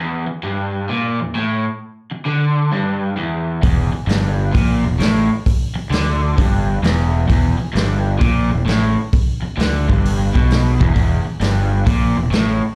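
Heard through a club PA with a light room reverb, this gritty, brooding fragment of a longer blues rock piece, leaning toward southern rock, has the raw feel of a live gig. A crunchy, double-tracked electric guitar opens alone, picking a low, overdriven riff with a touch of slapback echo, sitting bright and up front over a single minor chord. At 3.6 seconds a fingered electric bass arrives, growly and fuzzed, pushed through overdrive. At the same moment an acoustic vintage drum kit enters with hi-hat, punchy kick and a medium-tuned snare, its top end rolled off for a natural, studio-room character. The power trio rides a swung eighth-note groove in 4/4 until the fragment cuts off near 12.6 seconds.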